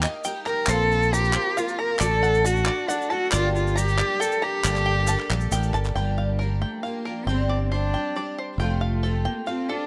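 Indie folk in a straight three-time feel, this wistful, stirring fragment is cut from a longer piece with a building arrangement. A picked twelve-string acoustic guitar supplies shimmering, octave-doubled accompaniment with an ensemble chorus and audible finger squeak, while a twangy bluegrass banjo played with fingerpicks adds percussive arpeggios above it. A fingered electric bass sits up front with a round, punchy tone, and crisp, close group handclaps play alongside a grainy, vintage tube shaker until they drop out at 5.9 seconds. From 0.5 seconds a single bowed cello carries the melody, woody and dark with vibrato and a touch of tape echo, placed close and prominent in the mix. The sound is dry, and the harmony drifts through suspended and added-note chords before the bass stops at 9.3 seconds.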